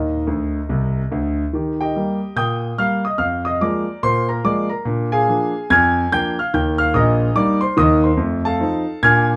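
Stride piano jazz, exuberant and swinging, at 144 BPM in 4/4 with a light swing on the eighth notes, in E-flat major. A solo concert grand piano carries the whole brief passage, cut from a longer piece, spanning from low bass to high treble. Its tone is clear and natural, with deep bass, long sustain and an up-front presence, set in a moderate studio reverb. A fill runs from 0.3 to 1.5 seconds before the main phrase begins. The harmony moves through E-flat and B-flat seventh chords, closing on an F seventh at 8.2 seconds as the passage ends at 9.4 seconds.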